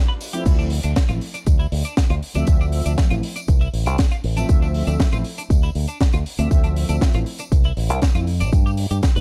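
Nu-disco with a cosmic, sensual mood, this dark, small-room excerpt rides on a Dm7 groove from 0.5 seconds: a punchy, layered electronic kick and a bright, envelope-filtered fingered electric bass sit up front beneath a dry, tight funk drum kit with a high-tuned snare and bright cymbals, a background tambourine, a clean, compressed twelve-string electric guitar riff coloured by analog chorus and delay, and round, detuned, sustained synth brass with filter sweeps and sidechain pumping.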